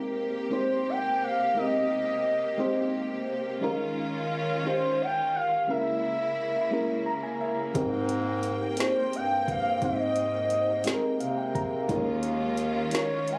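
Warm and intimate, this slow six-eight R&B excerpt in Ab major at 58 BPM opens with a mellow, round FM electric piano and lush bowed strings under a smooth, detuned gliding lead with chorus and tape echo, the piano adding fills at 6.7 and 10.9 seconds, before a dark, breathy bass clarinet and an electronic drum kit with a soft kick, a woody snare and metallic hats enter at 7.8 seconds, all heard through a phone recording in a room with club reverb.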